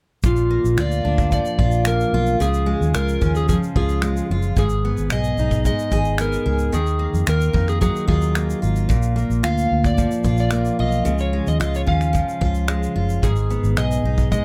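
A straight 4/4 pulse at 111 BPM drives this wistful, reflective acoustic pop passage, cut from a longer piece, with a soft brush kit of finger snaps, punchy kick and shaker sounding natural in a small room beneath a round, foam-muted vintage fingered electric bass that sits up front. A full-bodied picked dreadnought steel-string guitar, also up front, accompanies through Bb, Db, Abm and Ebmadd9, while a dark, slightly broken-up electric slide guitar carries the melody from 0.3 seconds, a little lower in the mix. Close, detailed microphones and little reverb give the recording an intimate presence.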